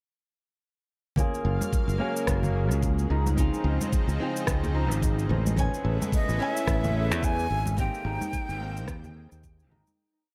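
A bright, growly fingered electric bass sits up front in this sunny, relaxed sunset chillout piece, punching out a dotted-rhythm line with tube saturation at 109 BPM in a swung 4/4. From 1.2 s the groove settles in: a soft, knocking electronic kick and a light lounge beat of electronic cabasa and rim click, re-recorded in a small room, with ringing congas played with hard hands in the background. A fingerpicked flamenco guitar with fresh strings adds rootless held chords and syncopated pushes through a low-pass filter and tape echo, while a lush, thick, detuned unison pad with a slow attack and chorus holds sustained chords. Behind them a concert harp rings out a six-step arpeggio loop that drifts against the bar, moving through Gbmaj9, Dbmaj9, Amaj9 and Abmaj9 in Gb lydian. A breathy jazz flute with vibrato and lifted highs enters at 6.1 s with a free, unsteady melody through analog delay, as the echo-heavy mix fades out from 7.0 s.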